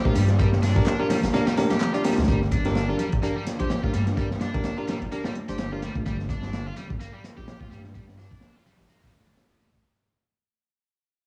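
Vinyl crackle and a heavy wash of echo sit over a small, lightly reverberant room in this gritty, energetic breakbeat excerpt, which runs at 127 BPM in 4/4 with a swung sixteenth feel around G minor. It opens on a drop, with a moody, detuned analog pad barely audible beneath the first moments. Up front, a crunchy breakbeat kit of tight kick, medium-tuned snare and hi-hat sounds saturated and rolled-off on top, while a thick, beating detuned saw bass carries a menacing low end alongside it. A high-gain, double-tracked distorted guitar plays a picked riff through a low-pass filter and analog delay, and a bell-like tine electric piano adds clean stabs roughened by vintage 12-bit sampler grit until about 5.8 seconds. In the background, an overdriven house kit layers handclaps and bright hats, and very quiet, ringing high-tuned congas sound distant, as if played softly in a large room. From 2.3 seconds the piece moves into its second section and begins fading out.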